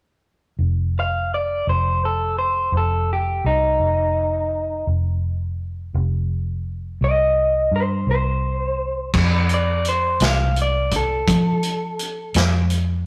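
A slightly broken-up electric guitar through a small old amp carries the melody from 1.0 s, its picked, compressed, lo-fi tone sitting up front in this rollicking, gritty slow blues in 12/8, cut from a longer piece. A round, foam-muted, dark electric bass holds down the low end from 0.6 s, and a vintage drum kit with dark cymbals, a tight kick, a medium-tuned snare and a rolled-off top joins at 9.1 s as the harmony moves to F. The rough rehearsal-room recording has warm saturation and a moderate stone-room reverb.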